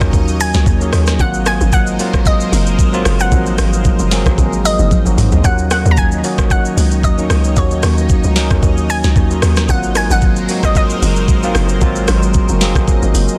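Amapiano at 113 BPM with a soulful, late-night mood, this short cut from a longer piece rides a swung groove from a gritty, knocking afro-pop drum kit with sharp snare, metallic hats, rim click, shaker and toms (plus a fill at 4.9 seconds) under a hollow, bouncy log drum bass, a bell-like tine electric piano, a lush detuned pad with chorus and phaser, and a round analog pluck melody entering at 0.4 seconds with chorus and delay, all cycling between Ebm7 and Ab13 in a dry, dense, heavily limited mix.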